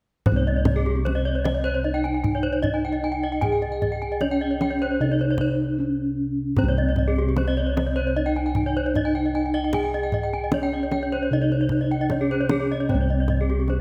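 In a straight four-beat pulse, this shimmering, brilliant excerpt of Balinese gamelan sets a mellow, soft bronze metallophone melody over round, up-front bossed gongs in the bass and deep, dry kendang played with soft hands, while two more metallophones play arpeggios above, one close-miked and full under a wooden mallet, the other bright and airy under a horn mallet, their paired tuning producing beating overtones, set in a moderate stage reverb with a break from 5.4 to 6.6 seconds.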